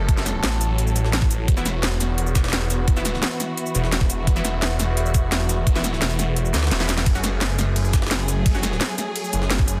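A phased, detuned saw bass swirls thick and saturated up front from the start, over sustained chords from a dark, bowed string section with vibrato and portamento and a deep, moody pad with chorus in the background, setting a dark, futuristic tone for this technical drum and bass cut. A knocking electronic kick and a layered kit with a cracking snare, crisp hats, ride and shaker drive the straight groove, with a very quiet, gritty, pitched-up jungle-style kit underneath, while the bass, strings and pad pump against the beat. Bold, punchy orchestra-hit-like stabs with tape echo sit back in the mix from 1.6 seconds, and the kick drops out at 6.4 seconds for a drum fill before the harmony lands on F#madd9 at 7.1 seconds.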